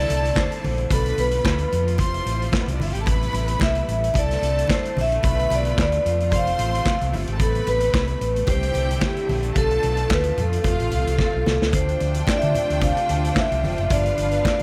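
A lightly swung sixteenth-note disco groove drives this sultry, glamorous excerpt, built on a saturated vintage drum kit up front with a punchy kick, snare, hi-hat and handclaps, alongside a dark, overdriven fingered electric bass and very quiet, bright congas. A ringing, metallic vibraphone carries the melody over a lush violin section playing a second line and a focused string section holding sustained chords, set in light reverb and small room ambience. After a drum fill at 11.2 seconds, the harmony moves at 11.7 seconds from its repeating C69, Bm7b5, F and Am9 pattern onto Dm7 and then G7.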